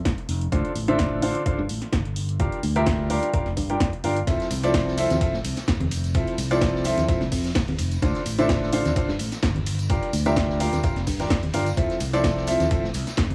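Feel-good and euphoric, this piano house excerpt moves at 128 BPM in F major with a light swing, as an up-front, woody upright piano riff, low-pass filtered with analog delay and sidechain pumping, cycles through Dm7, Gm7 and Fmaj7 over a growly fingered electric bass that also pumps. A punchy, tape-warmed electronic kick and an analog drum machine supplying hi-hat and snare drive it from 0.1 s, and at 4.3 s a dark-cymballed vintage kit and hard-handed tambourine and congas join from the background. The sound is dry and gritty with light reverb and a cassette-tape character.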